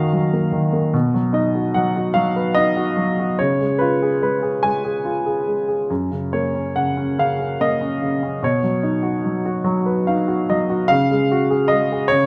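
Tender and calm, this brief classical excerpt from a longer piece features a worn-sounding baby grand piano, present and up front with long sustain, unfolding lyrically in a rubato 6/8 over chords such as B, C#, F# and Badd9, with a short fill at 9.7 seconds, all captured by close, detailed microphones in light reverb.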